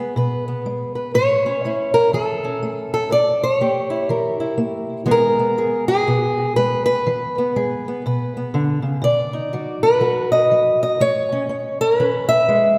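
Soulful and laid-back, this short acoustic country blues excerpt moves at 122 BPM in 4/4 with a lilting swing, carried entirely by a solo fingerpicked steel-string parlour guitar. Its woody tone and the warmth of old strings sit up front, spanning A2 to E5 as the chords pass from a rootless E through A, A#dim7, E and B before returning to A. A long, wet concert hall reverb places the guitar further back in the room, lending the fragment a spacious, echoing air.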